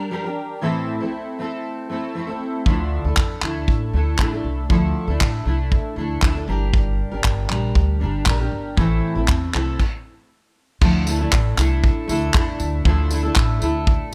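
A straight 4/4 pulse at 118 BPM carries this wistful, reflective acoustic pop excerpt in D minor, where a full-bodied, double-tracked fingerpicked steel-string acoustic guitar opens alone over Gm and Am before a woody, thumpy pizzicato upright bass and a natural country drum kit with a punchy kick, dark cymbals, handclaps and tambourine join at 2.7 seconds, all in a dry, close sound, with a stop from 9.8 to 10.8 seconds before the return to Dmadd9.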